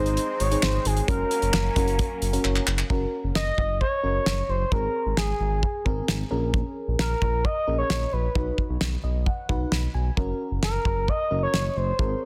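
This synth-pop excerpt moves at 132 BPM in a straight 4/4, with a cool, melancholic mood and tuning set to A4 = 438 Hz. An expressive sawtooth lead carries the melody up front, smooth and mellow with vibrato, thickened by chorus and trailed by digital delay. A soft, round FM electric piano with a dark, noise-tinged tone supplies chorused accompaniment. A swirling, detuned analog pad drifts in the background through phaser and chorus, but it sounds only for the opening 2.9 seconds, as the electric piano and a drum fill lead into the next section. Underneath, a sustained synth bass blends sawtooth and triangle with ring modulation and vibrato, sitting beside a dry, airy, polished 70s drum kit with a fat snare, tight kick, hi-hat and handclaps. The harmony moves from Ab and Gb to Abadd9, Bbm7 and B, the electric piano adds another fill around 8.8 seconds, and light reverb and studio ambience frame a dense, heavily limited modern master.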